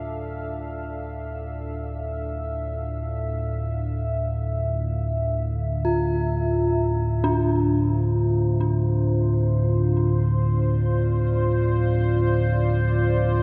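Floating in free time, this dark ambient drone sets a desolate, unsettling mood from its first moment. A deep, ominous drone rumbles up front in the low register, while a moody sawtooth pad holds sustained chords above it, both fading in across the whole passage as the harmony shifts from D minor to D minor seventh at 5.8 seconds. A bronze singing bowl rings on a single note throughout, its metallic, airy tone carrying a slow, meditative beating. At 7.2 seconds an eerie, detuned synth bell enters with inharmonic, warbling arpeggios, softened by chorus and delay. The pad and bell share a mellow chorus sheen, and a cathedral reverb with a 5.2-second tail places the sound in a vast, echoing space, in a passage cut from a longer piece.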